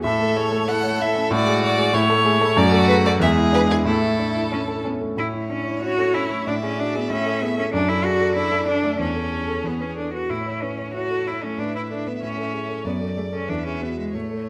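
In a straight 2/4 pulse, this quick, lively and cheerful classical-period movement for piano quartet is heard in a passage cut from a longer piece, with a short opening phrase giving way at 5.2 s to a longer second section. A bowed violin with vibrato carries the melody from a distant spot, while a second, more focused violin and an up-front cello with a smooth, even tone add supporting lines, and a warm grand piano with short sustain provides up-front accompaniment. The three strings share a rich character, and a moderate recital hall reverb surrounds the quartet.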